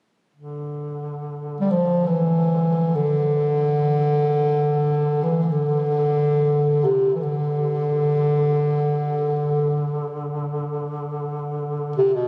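A mellow bass clarinet carries the melody up front in a classical style, entering at 1.6 seconds and moving between B2 and G3 in free time over a warm duduk drone on D3 that sits close-miked in the background with vibrato from 0.3 seconds. This Caucasian folk lament feels longing and solemn. The fragment, cut from a longer piece, was captured on a phone in the room and bathed in a moderate cathedral reverb with a 5.8-second tail.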